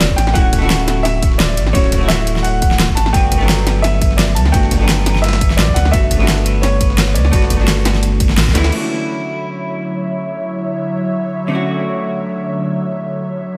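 A short cut from a longer liquid drum and bass piece at 172 BPM in D major opens straight into a drop, pairing an intimate concert grand piano melody, heard through lush chorus and tape echo with audible action noise, against a dark, clean hollow-body jazz guitar accompaniment treated with analog chorus and diffuse ambient delay. Underneath, a round sine sub bass sits up front while a punchy electronic kick, a pop kit with a fat snare and bright hats, and a gritty, overdriven sampler-style kit with ride and snare tucked in the background drive the groove. The harmony moves from Dmaj9 to Gmaj9, and a band accent at 8.4 seconds closes the drop as the piano, bass and drums fall away. From 8.7 seconds the guitar continues beneath an airy, breathy pad with a nasal, detuned edge, its sustained chords pumping through sidechain and chorus back on Dmaj9. The mood is uplifting and warm, the mix dreamy and soaked in a lush hall reverb.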